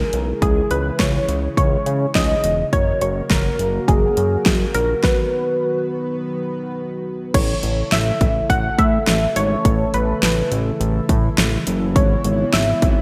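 Bright 1980s-style digital production in a lush hall reverb gives this cool, nocturnal synth-pop excerpt its gloss, moving at 104 BPM in a straight 4/4 over C#m, F# and B, with a stop from 5.0 to 7.3 s before the section turns to A and closes on C#m7. A punchy, up-front pop drum kit with a fat gated-reverb snare and bright hats enters at 0.1 s, alongside a thick, detuned sawtooth analog bass. Above them, a funky polysynth comp carries the melody with a dark filter pluck, chorus and delay, while a shimmering pulse-width pad holds soft-attack sustained chords underneath.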